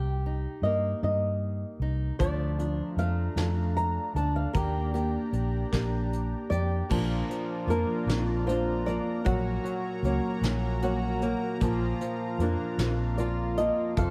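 Hopeful and tender, this slow acoustic folk-pop ballad in 6/8 at 51 BPM in Bb major, cut from a longer piece, opens with a thumb-plucked flamenco guitar carrying the melody over a fingerpicked archtop guitar with audible finger squeak and a round, foam-muted vintage electric bass sitting up front, and at 2.2 seconds a distant brush kit with dark cymbals and a fat snare, a felt-muted upright piano playing mellow arpeggios with audible action noise in the background, and a brassy, detuned sawtooth analog pad with chorus holding sustained chords join in, set in light reverb.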